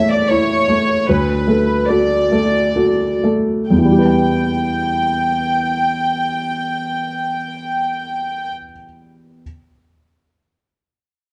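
Fragile and reflective, this brief neoclassical fragment in a rubato 3/4 slows over its opening 3.7 seconds as a felt-muted upright piano provides mellow, intimate accompaniment with short sustain beneath a soft-attacked, floating violin section carrying the melody. The strings fall away at 8.5 seconds while the piano lingers in a moderate large-studio reverb, the production dark and warm.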